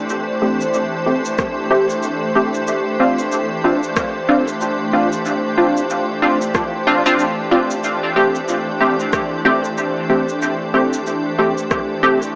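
A soft, organ-like pad opens this spacious, deep ambient dub excerpt in A minor at 93 BPM, its pure, detuned chords sweetened by ensemble chorus and moving from Am7 to Dm7 and back, joined almost at once by a tape-tinged electronic shaker and rim click trailing dub echo. Muted, filtered sawtooth chord stabs sit up front with a plucky, decaying bite, and a layered electronic kick enters at 1.4 s to anchor the swung 16th-note groove. The echo-heavy mix carries a moderate plate reverb and a small-speaker character.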